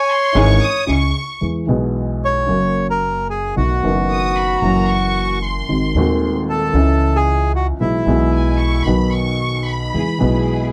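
Nostalgic and playful, this brief tango passage in E major moves at 113 BPM in 4/4 with a loose, rubato feel, cut from a longer piece. A reedy, bright bandoneon carries the melody up front until 8.8 seconds, while a rich, smooth violin section sings a bowed second line high above it with even vibrato, set at a distance. A baby grand piano supplies intimate accompaniment with audible action noise, joined by a woody, thumpy pizzicato upright bass that anchors the low end. A muted, con sordino string section adds dark, veiled stabs in the background at the opening and again from 9.9 seconds, where the harmony comes to rest on E after passing through C#m, F#7, G#7 and B. The dry, close recording has the feel of a 1970s studio, with little reverb around the players.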